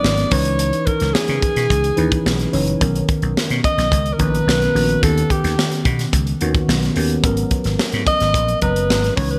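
Polished 1980s jazz-funk pop with an urban, breezy mood, where a breathy, up-front alto saxophone carries the melody over a worn, slightly out-of-tune tine electric piano with overdrive and analog chorus, a growly, punchy slap bass, and a tight funk drum kit of high-tuned snare, tight kick and hi-hat with gated reverb, all moving through C#m9, Bmaj9, D#7alt and G#m11 in a bright digital production with plate reverb.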